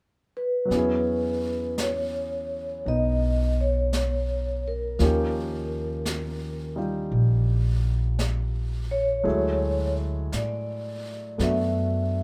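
Jazz ballad at 56 BPM with a late-night, intimate mood and a gentle swing, cut from a longer piece, where a ringing, metallic vibraphone with medium mallets and fast motor vibrato carries the melody from 0.4 seconds over a warm baby grand piano with audible action noise, a woody pizzicato upright bass up front, and a brushed drum kit with a high-tuned snare and hi-hat, all in light reverb as the chords move through E6, D#9 and Dadd9.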